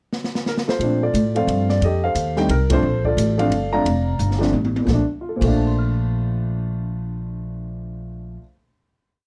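A jazz piano trio plays a brief, complete piece in Bb major at 177 BPM in 3/4, swinging its eighth notes with a sophisticated, relaxed air. The drums open with a fill from 0.1 seconds, a smooth, boomy kit in a small room with dark cymbals and a rolled-off top, sticks keeping a ride cymbal pattern beneath the band. A dark, mellow grand piano enters at 0.5 seconds, up front with short sustain, stating a motif-based melody of call phrases alongside syncopated comping in rootless voicings. The upright bass arrives at 0.8 seconds as the chords move from Bbmaj7 to F9 and back, its woody, pizzicato steel strings walking up front. A band accent lands at 2.7 seconds and a second drum fill leads into the final chord, all set in light reverb.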